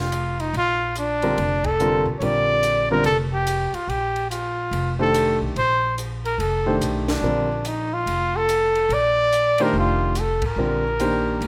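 A mellow trumpet sits up front as the soloist, playing a jazz-style melody between D4 and D5 with a soft attack, light vibrato and scooped notes, set in a plate reverb. This is a searching, spiritual modal jazz passage in Bb major at 144 BPM in 4/4, swung on the eighth notes, cut from a longer piece and opening on a Bbmaj9 chord. Beneath it, a woody pizzicato upright bass with steel strings holds the low end from F1 to D2. A compact cocktail drum kit plays dry hi-hat, kick, ride and snare, with dark cymbals, a high-tuned snare and a punchy kick. A warm, intimate grand piano enters at 1.2 s to accompany between D3 and C5, its action noise audible. The band lands a shared accent at 1.6 s and twice more later, all within a moderate large studio room.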